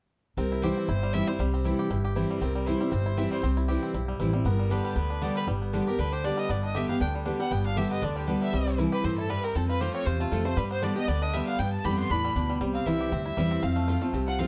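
A clear, focused fiddle leads this lively, virtuosic bluegrass excerpt in C major, racing along at 235 BPM with a swung feel alongside a bright, twangy fingerpicked banjo that shares the melody. Underneath, a full-bodied jumbo acoustic guitar picks the accompaniment up front while a growly, thumpy upright bass anchors the low end, all moving through C, G and F chords. At 8.0 seconds a second bowed fiddle with an earthy tone joins in the background, touched with slapback echo, within a dark production with light reverb.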